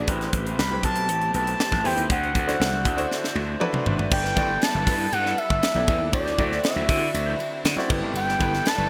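Polished 1980s jazz-funk pop with an urban, upbeat mood, where a smooth sawtooth synth lead with chorus and vibrato carries the melody from 0.6 s over a growly, overdriven slap bass, a crisp fusion drum kit with punchy kick, high-tuned snare and gated reverb that plays a fill from 3.1 to 4.1 s, a baby grand piano with lush chorus and long sustain, a dark, slightly broken-up electric guitar riff in the background, very quiet bowed strings holding distant chords, and soft-handed, damped congas, set in a moderate, lush hall reverb with bright digital 1980s production.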